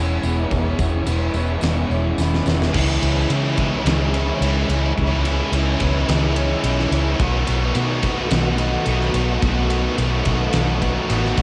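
Dreamy and wistful, this excerpt of shoegaze-tinged dream pop rock moves at 108 BPM in a straight 4/4, built on layered guitars: a crunchy overdriven guitar with lush chorus and a lo-fi garage guitar with overdrive and reverse reverb sit in the background, a shimmering, octave-doubled twelve-string acoustic plays very quiet arpeggios with audible finger squeak, and a very quiet string machine holds warbling, full-bodied cello chords. A round, punchy, foam-muted electric bass sits up front, a jingly tambourine appears only from 0.2 to 2.6 seconds, and a huge arena drum kit with a fat snare and boomy kick joins at 0.5 seconds, its fill from 2.2 seconds leading into a bright, double-tracked distorted guitar riff at 2.7 seconds. The harmony moves from E6 to C#m7 and then B7 at 7.2 seconds, all captured as a dry home cassette recording.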